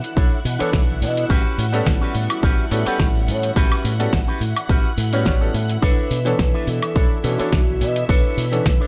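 A punchy, up-front electronic kick drives this groovy, cosmic nu-disco excerpt at 106 BPM in B minor, with a slight swing on the sixteenths. A fat snare, metallic hats, cabasa and woodblock from a pop kit sit beside a round, dark fingered bass and a bright, twangy guitar riff, both shaped by an envelope filter, over Bm11 and A13 chords. A lush, vintage string machine with ensemble chorus and a clear but worn piano both pump to the sidechain, and from 5.8 s a soft-mallet vibraphone with slow motor vibrato and tape echo carries a ringing melody.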